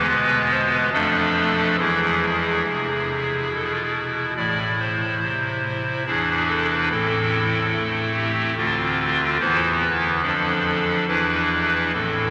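A pipe organ sounding a hollow clarinet reed stop with baroque voicing, audible chiff and tremulant plays solo and up front throughout this dark, grave 12.3-second classical chorale-style excerpt in 3/4 at 71 BPM, tuned to A4 = 443 Hz and spanning A1 to D5, its harmony moving among E, Dm/F, Am, E7, Dm7 and E5 in a wet cathedral reverb with a 6.6-second decay.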